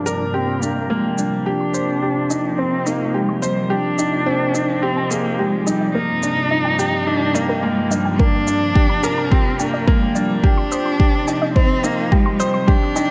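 A nasal, expressive bowed cello carries the melody up front in this moving, cinematic piano and strings electronica cut in C minor at 107 BPM, over a woody, slightly detuned upright piano riff with digital delay, a thick sawtooth unison pad pumping with sidechain and chorus, soft round pluck arpeggios tucked in the background, and an electronic shaker, as filter sweeps on the cello and pluck shape a build-up and a deep electronic kick enters at 8.2 s, the whole set in a lush hall reverb.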